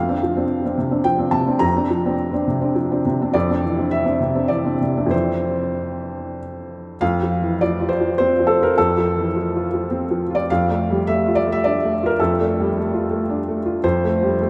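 Hopeful and tender, this short cut from a longer neoclassical minimalist piano piece unfolds in a rubato 3/4 at 93-110 BPM in F major, its felt-muted upright piano playing solo from F2 to Bb5 with a soft, boxy, intimate tone, audible action noise and short sustain set up front against a vast, echoing cathedral reverb with rolled-off highs, drifting from Bbadd9 and Cadd9/F into a second passage at 7.0 s that settles through F and Dm/F back to F.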